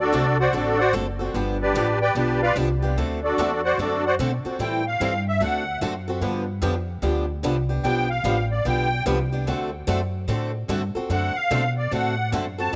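A swung 148 BPM pulse in 4/4 drives this charming excerpt of acoustic string swing in D mixolydian, where a reedy, shimmering musette accordion with tape echo carries an up-front solo melody over a woody, pizzicato upright bass, a bright picked swing-style guitar and a boxy steel-string guitar with finger squeak set in the background, all in a small, lightly reverberant room as the chords move among D7, G7 and Am7.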